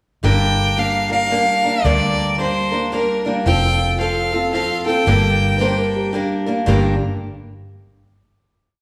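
Dusty and brooding, this short honky-tonk and classic country piece in G minor moves at 112 BPM in a swung 3/4, with a clear, focused fiddle with light vibrato carrying a motif-based melody up front over bright, boxy picked archtop guitar strumming open chord shapes and a round, punchy foam-muted electric bass on root and fifth, while a dark, woody upright piano slips in at 5.6 seconds with mellow blues licks before the music settles on a final chord in a reverberant recital-hall space.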